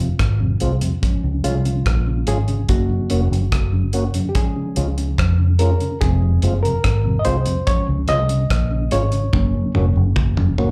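A reedy, slightly out-of-tune electric piano carries the solo across this laid-back, uplifting roots reggae excerpt, its worn stabs sounding through built-in speakers with a slapback echo. Beneath it, a dark, foam-muted fingered bass sits punchy and up front from 0.2 seconds, a mellow tonewheel organ adds round accompaniment through chorus vibrato and a slow rotary speaker, and a cloth-damped, thuddy drum kit with a tight kick and rolled-off top plays hi-hat, rim click and toms before a fill at 9.3 seconds. The sound is that of a live gig heard through the venue's PA, with light club reverb.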